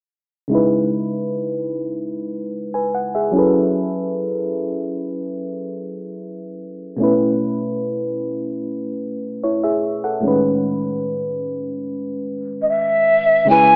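Moody and sensual, this R&B fragment, cut from a longer piece, moves at a slow 74 BPM in C# minor through lush extended chords, C#m9 to F#m11, B9sus4 and Amaj9#11. A dark, full-bodied FM electric piano with a noise layer and a fast, decaying attack carries the accompaniment from 0.5 seconds under a filter sweep. An airy bamboo pan flute with chiff and vibrato arrives only at 12.6 seconds, all within a plate-reverb-soaked, echo-heavy, low-passed mix that sounds like a small speaker.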